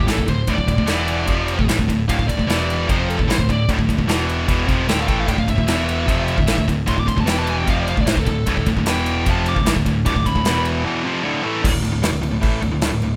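A dark, high-gain lead guitar solos through this aggressive heavy metal excerpt until 10.6 s, riding over an up-front overdriven rhythm guitar, a bright, high-gain distorted riff guitar that drops out at 11.6 s, a growly, punchy overdriven picked bass, and a big acoustic drum kit with boomy kick, medium-tuned snare, crash and ride, set in a rough, reverberant home-demo mix that cycles between D5, E5 and Dm chords before a brief break and a closing D5.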